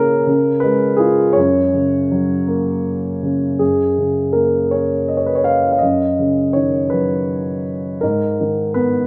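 A dark, mellow baby grand piano carries this calm, tender classical solo, sitting up front with a vintage character and long sustain across its span from low bass to the upper middle register. In a rubato 6/8 at about 54 dotted-quarter beats per minute in F# major, the opening idea returns at 3.6 seconds, its harmony moving from C# to F# and later colouring toward Badd9/F# and G#madd9. A moderate recital hall reverb gives this short fragment of a longer piece a gentle sense of space.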